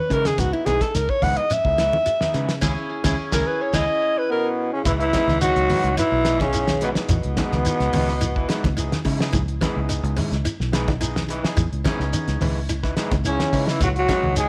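Built on a straight, driving 4/4 afrobeat groove at 107 BPM in C# minor, this funky passage, cut from a longer piece, opens on a C#m9 colour with a cloth-damped drum kit of fat snare and tight kick, low-tuned thick-skinned congas and a grainy, mellow shekere tucked into the background. A round, dark fingered electric bass, thickened by transformer saturation, anchors the low end, while a bright, plectrum-plucked qanun spins triple-string arpeggios through tape echo. A slightly broken-up, twangy electric guitar adds stabs and a barky, overdriven tine electric piano fills in accompaniment behind them. A breathy, whispered alto saxophone carries the intimate opening solo up front until 4.5 seconds, with a band accent and a drum fill closing out that first section. At 4.3 seconds a growling trombone with scooped notes takes over the melody, supported below by a forceful tenor saxophone second line wet with tape echo, and both drop out at 9.0 seconds before returning at 13.3 seconds. 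A moderate echo chamber reverb gives the whole studio ambience a roomy sheen.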